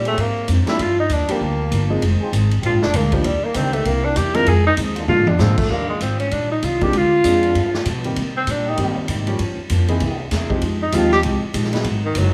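A brisk swing at 195 BPM in 4/4 drives this energetic, joyful big band jazz excerpt in Eb major, with a punchy kick, medium-tuned snare, hi-hat, ride, crash and toms from a natural, big-room drum kit that slips in a short fill at 5.1 seconds. The upright bass plays pizzicato lines that sound woody and growly, sitting just under the lead, while a bright, picked steel-string acoustic guitar and a smooth, vintage grand piano fill in the background. Up front, a breathy tenor saxophone solos with light vibrato, pausing at 8.8 seconds before returning for the final stretch. Behind it, a cup-muted trombone section holds soft, veiled chords that feel distant and mellow. The harmony moves through jazz changes such as Ab7#11, Ebmaj7, Dm7b5, C7alt and Fm9, and a moderate large-studio reverb gives the whole band a roomy glow.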